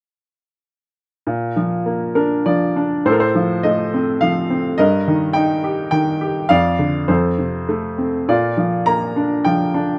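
A clear, boxy baby grand piano with short sustain plays alone and up front from 1.3 to 10.0 seconds in this sunny, relaxed passage of lyrical classical solo piano, cut from a longer piece, moving with rubato at 103 BPM in 3/4 in Bb major, spanning F2 to Bb5 over chords of Bb, F/A, Eb/G, Dm/F and F before settling back on Bb, all set in light reverb within a dark, warm production.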